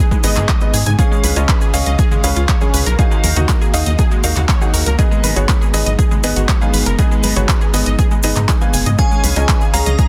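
A bright, detuned unison pluck arpeggio with tape echo and sidechain pumping opens this driving, dreamy progressive house excerpt, joined by a punchy electronic kick and a deep house kit with handclaps and hi-hat, both overdriven, along with grainy cabasa, very quiet ringing woodblock and congas, a tight, dark sequencer bass, felt-muted upright piano stabs with audible action noise, and a breathy, warbling pad, before a crystalline FM bell melody and a smooth supersaw second line enter at 9.0 seconds in a dense, heavily limited mix with little reverb.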